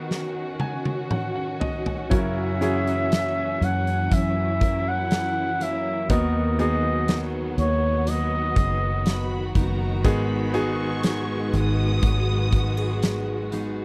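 Tender and emotional, this slow 60 BPM pop ballad in B major opens with a fill from a huge arena drum kit with a fat snare and punchy kick and a clear, polished baby grand piano over rich bowed strings, then from 2.1 s a vibrato-laden flugelhorn carries the melody with soft attack and slapback echo while a round, foam-muted vintage electric bass and a bright jumbo acoustic guitar picking arpeggios with finger squeak join in, and a smooth, lush violin section adds a high second line at 9.1 s, all captured in a dry, close 1970s-style studio sound.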